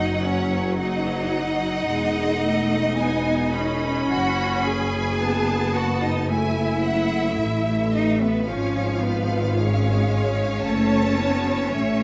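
Up front, a clear, focused double bass section anchors this tender, lyrical slow romantic movement for string orchestra at 55 BPM in a flexible rubato 4/4, beneath an intense cello section, an even, smooth viola accompaniment, a rich second violin line and a lush, warm violin melody, all bowed with vibrato and set in light reverb as the harmony moves from D#m7/F# through E and F#m7 to F#m.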